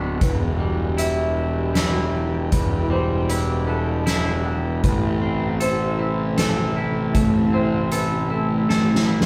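A soft, organ-like pad sustains pure, chorused chords in the background while a bright, twangy clean guitar picks arpeggios and a fuzzy overdriven bass sits up front, soon joined by a dark, slightly broken-up second guitar with analog delay and a soft-mallet drum kit with a boomy kick and fat snare, all in a wet stone room, in this hopeful, soaring post-rock passage in 3/4 that moves from Em to Am and ends on a drum fill at 8.7 seconds.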